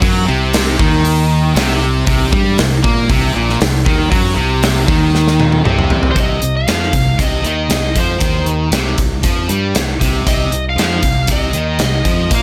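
Gated 80s drums sit up front in this menacing, heavy hard rock excerpt, with a punchy kick and medium-tuned snare placed in a bright stone room, alongside hi-hat and toms. At 117 BPM in straight 4/4 and C minor, three picked rhythm guitars stack a riff in the background: a high-gain, double-tracked distorted guitar, an overdriven semi-hollow guitar with a hollow-body tone, and a sludgy distorted guitar. A bright, punchy fingered electric bass plays beneath them with a direct sound. The high-gain guitar drops out at 6.1 seconds, during a drum fill that runs from 5.1 to 6.2 seconds. At that point a dark, bluesy overdriven lead guitar enters with a melody colored by distortion and tape echo, carrying on until the cut at 12.4 seconds over a small room ambience.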